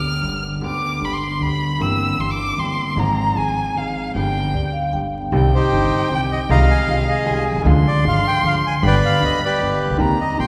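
Set in a reverberant concert hall with vinyl crackle, this melancholic, dramatic rubato tango fragment in 3/4 opens with an expressive bowed violin solo full of vibrato and portamento over clear, deep-bassed grand piano and woody pizzicato upright bass, a metallic, ringing vibraphone glints briefly at 4.5 seconds, and a reedy, close-miked bandoneon steps up front with the melody from 5.5 seconds.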